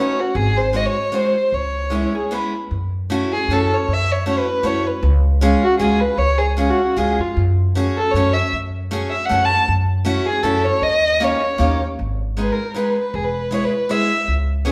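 A dark, sul tasto violin sings the bowed, vibrato-laden melody up front over a bright, fresh-stringed picked steel-string acoustic guitar with audible finger squeak, opening this nostalgic, whirling musette waltz in F# minor at 156 BPM, swung lightly with a rubato lilt. A growly, thumpy pizzicato upright bass joins at 0.4 seconds, and a clean hollow-body electric jazz guitar adds a brief second line from 1.9 to 2.7 seconds. The band plays live in one room, wrapped in a wet large-studio reverb, and this cut from a longer piece moves through chords such as F#m7, D#7 and G#m before settling on E.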